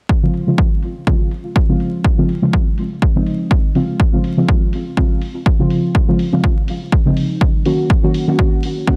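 The rhythm rides a 123 BPM pulse in 4/4 with a gentle 16th-note swing, driven by a dry, punchy electronic kick that sits up front with an overdriven edge. An analog-sounding hi-hat enters at 0.3 seconds, tucked far back in the mix, dry and slightly gritty from overdrive and softened by a low-pass filter. Over this, a deep, mellow chord stab in Db major carries the harmony, its detuned blend of sine, triangle and sawtooth tones giving a soft, dark body with a fast attack and decaying tail, colored by chorus, phaser and digital delay while a filter sweep and moving notch shape it throughout. The chords hold on Dbmaj7 before shifting to Gb6 at 7.7 seconds, keeping the mood warm and sunny in this deep house cut from a longer piece. Light reverb, a dense and heavily limited modern master and a layer of vinyl crackle round out the sound.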